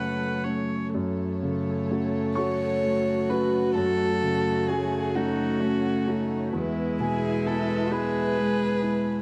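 A dry, close recording with a 1970s studio intimacy frames this brief, reflective excerpt of neoclassical piano and strings in F# minor, moving at a rubato 43 BPM in 6/8 from F#m to E at 6.5 seconds. Up front, a dark, mellow baby grand with long sustain carries the accompaniment beside a solo violin singing the melancholic melody with light vibrato and an airy sul tasto bow, while a cello traces a second line and a pure, floating viola fills in the harmony. Behind them, a chamber string section holds warm sustained chords throughout.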